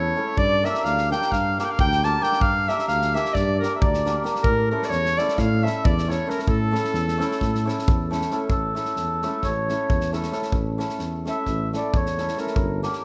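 Balkan wedding band folk in 9/8 at 266 BPM counted in eighths, this excerpt from a longer piece has a bittersweet, restless mood, set in A Phrygian dominant with a straight feel. A soprano saxophone carries the melody up front in a classical style, its tone smooth on top with a light vibrato, until it drops out at 8.1 seconds. Behind it a mellow, reedy accordion plays a round, airy second line, then takes a solo from 8.5 seconds as the music moves into a new section. A shimmering, ringing hammered dulcimer supplies accompaniment, while a dark, punchy tuba holds the low bass, also in a classical style with light vibrato. A loose drum kit enters at 0.4 seconds with a punchy kick and medium-tuned snare, its small-room sound mid-forward and rolled off on top, as the harmony shifts from G minor to A, all framed by a moderate recital hall reverb.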